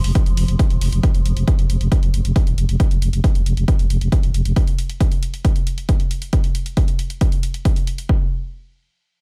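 A small room ambience frames this short cut from a longer piece of driving peak-time techno, running at 136 BPM in a straight 4/4 with a relentless mood. A punchy, layered electronic kick sits up front, re-recorded in a small room with studio reverb, pounding from 0.2 s through to 8.2 s. Beside it, a growling FM bass, thick and sustained with tube saturation and sidechain pumping, holds between Eb1 and F1 before dropping out at 4.5 s. A swarming, tense drone on F3 hovers in the background for only the opening 1.1 s, its detuned, wave-folded, granular texture bathed in its own reverb and shaped by sidechain pumping. An analog, overdriven electronic hi-hat ticks quietly from the start to 8.1 s, pumping on the hats and cymbals, before a brief closing section takes over.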